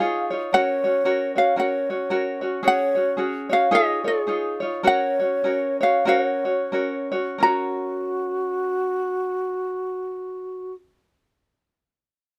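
A light, fingerpicked ukulele carries the melody up front in this relaxed, languid Hawaiian piece with a swung feel, alongside a breathy bamboo bass bansuri playing a close-miked second line with vibrato and tongued notes, and an acoustic tenor ukulele, also fingerpicked, in accompaniment, all captured dry and detailed as the pace slows between 2.7 and 7.4 seconds.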